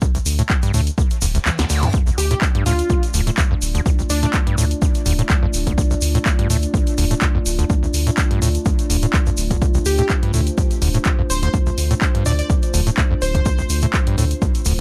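Gritty, trippy acid house cut from a longer piece, built on an up-front, squelchy overdriven acid bass riff with filter sweeps and sidechain pumping over a punchy overdriven kick, a punchy analog drum machine of claps, hats, snare and toms, a grainy tube shaker and a round, deep analog bass, as a reverse cymbal at 1.3 seconds and a brief drum fill at 1.5 seconds usher in a moody detuned pad and a catchy, bright unison lead with lush chorus and dub echo that enters at 2.2 seconds and returns at 9.9 seconds, all in a dry, close mix.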